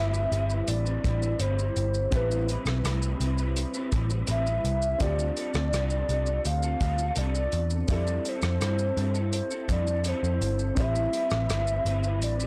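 Indie and bedroom pop in A minor at 83 BPM, this lonely, wistful 12.5-second excerpt sets a hollow, warbling clarinet-like synth lead with subtle chorus and slapback echo over a very quiet, woody upright piano with audible action noise, a slightly broken-up lo-fi electric guitar through a small old amp with ensemble chorus and vibrato, a round, foam-muted picked bass with transformer saturation sitting up front, and a damped, dry 70s drum kit of kick, hi-hat, rim click and shaker entering at 0.1 s, all moving through Am9, Dm11 and Fmaj9 in a blown-out, overdriven recording with light reverb.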